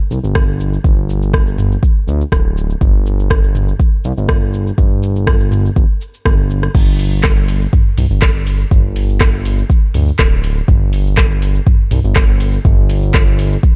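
A straight 4/4 groove at 122 BPM drives this spiritual, dark afro house excerpt, where an overdriven, deep electronic kick sits up front beside a smooth, gliding sawtooth-and-square synth bass with portamento and sidechain pumping, while an overdriven electronic afro-pop kit of metallic hi-hats, handclaps, rim clicks, shaker, toms and crash cymbal fills out a dry, warm production that reaches its drop at 6.7 seconds.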